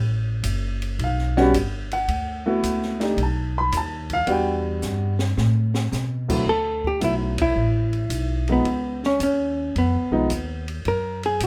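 Relaxed and swinging, this short cut from a longer small-group jazz piece moves at 110 BPM in 4/4 with a loose swing feel, centered in D major. Upright bass opens alone, plucked and woody with steel-string bite, sitting up front, and the open kit joins at 0.4 seconds with dark cymbals, a high-tuned snare and a boomy kick, kept low in the mix. An intimate, vintage upright piano enters at 1.0 seconds, smooth and close, its action noise audible as it comps through chords such as D69, B7#11 and Em7. A drum fill runs from 4.8 to 5.9 seconds, and at 6.5 seconds the hollow-body electric guitar takes the melody in a clean, dark, compressed fingered tone, with a band accent landing soon after. A moderate club reverb gives the group a natural room sound as the harmony moves through C#9 toward F#.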